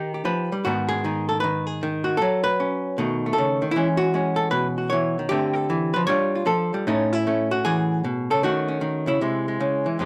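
A swung 4/4 pulse at 154 BPM, with the eighth notes lilting at a 67% swing, drives this brief solo jazz piece cut from a longer performance. A lone archtop guitar, miked and amplified, carries everything from the first moment to about 10.1 seconds, ranging from F2 up to C#5. Its electric hollow-body tone is dark and clean, the picked notes sitting up front in a moderate studio reverb. The harmony moves quickly through colorful changes, from D# and G#m7 through B7, E69 and Dm7 to Amaj9, D#m7b5 and a closing C. The mood is cool and smoky, carried entirely by one instrument.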